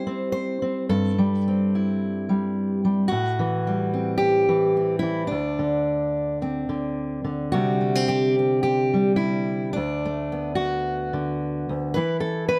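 Warm and pastoral, this short folk passage, cut from a longer piece, features a single fingerpicked steel-string acoustic guitar in straight 4/4 time, sounding dark and up front with the full body of an auditorium-style instrument and finger squeak. It moves through C/G, Am7 and Csus2/D before shifting at 7.5 seconds to a second idea built on Csus2 and Bm7/D. A moderate studio ambience surrounds the guitar until it comes to rest at 12.6 seconds.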